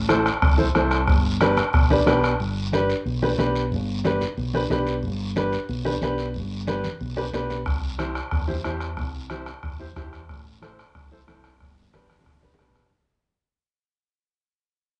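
Festive, sunny cumbia in G major at 182 BPM, this snippet cut from a longer piece carries a home-cassette, small-room feel with light reverb, as a clear, woody upright piano up front plays boxy accompaniment through cassette tape coloring and plate reverb over chords moving among Am, G and C. A round, punchy fingered electric bass with a dark, amped tone anchors the low end, while a distant bombo played with a soft beater drops out at 2.4 seconds and returns at 7.7, low-tuned, thick-skinned congas sit damped in the background, and a raspy, saturated guiro adds bite. After a short piano fill, the music fades out from 2.4 seconds onward, with drum fills marking the way.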